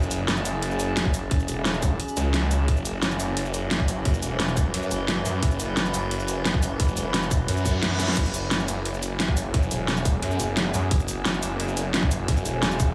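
A snarling, saturated sawtooth bass growls up front through this dark, futuristic technical drum and bass excerpt at 175 BPM, pumping against a tight electronic kick that enters at 1.1 seconds and a layered dubstep kit with a huge snare and metallic hats, while an eerie FM drone holds sustained F#5 chords with chorus and built-in reverb behind them, and a reverse cymbal in the background rises into a drum fill at 8.0 seconds.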